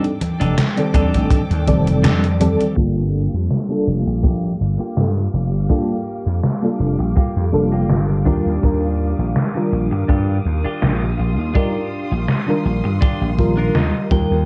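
A slow 82 BPM groove in 4/4, with a light swing on the sixteenths, drives this hazy, nostalgic vaporwave passage in G minor, cut from a longer piece. A gated 80s digital drum machine supplies congas, hi-hat, snare and crash, overdriven and muffled by gated reverb and low-pass filtering. A punchy slap bass that sits up front enters at 0.4 seconds, and a tight, gritty acoustic kick follows at 0.9 seconds. A mellow FM electric piano carries the accompaniment with a round, warbling tone shaded by tremolo, chorus and tape echo, while a distant bowed string section holds soft sustained chords with vibrato and portamento. A bright, twangy clean electric guitar plays a picked riff through subtle chorus and tape echo; from 2.8 seconds, as the harmony moves from F13 to Gm7 and later Ebmaj9, a filter sweep colours it, and it closes with a short fill at 13.4 seconds. The dark, cassette-toned production carries a faint mains hum and small-room reverb, giving the music a worn, dreamlike glow.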